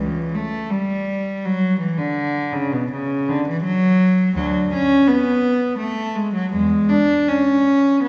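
A solo bowed cello with a rich, reedy gut-string tone in period style carries this flowing, dance-like baroque-style suite movement in 3/4, moving with rubato around 82 BPM across a range from C#2 to D4. The single player sounds close and up front throughout the 8.1-second fragment of a longer piece. A wet recital-hall reverb with a 1.7-second decay surrounds the cello, and the top end is cut off entirely above 8.0 kHz.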